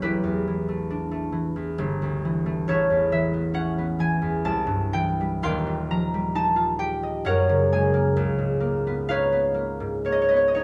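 A stone room's reverb, ringing for about 1.0 s, surrounds this short classical passage, which is heard from further back in the space. A solo concert harp plays throughout, its fingerpicked, acoustic tone warm and ringing and set up front, spanning from Eb1 to C6. The mood is peaceful and serene, moving at roughly 66 BPM in 3/4 with uneven, rubato beats that let the phrases breathe. The harmony drifts through colorful chords, opening on A9sus4 and passing through G69, C and Ebadd9 before settling on Db13 near 8.2 seconds. Tuned to A4 = 441 Hz, the 10.6-second passage is cut from a longer piece.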